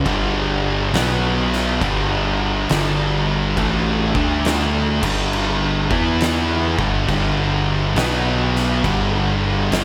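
Growling fingered electric bass, overdriven and punchy, anchors this hypnotic, heavy stoner and doom metal excerpt at 68 BPM with a swung feel, moving beneath two dark, thick fuzz guitars and a bright, scooped, double-tracked high-gain guitar that churn through power-chord riffs on G, B, D and E. An oversized low-tuned acoustic kit with a fat snare, punchy kick and dark crash cymbals sits in a gritty, pumping stone room, while a barely audible bowed-like drone, tense and sawtooth-edged with vibrato, enters at 0.9 seconds with sustained chords. A small room ambience surrounds the band through the 9.8-second excerpt.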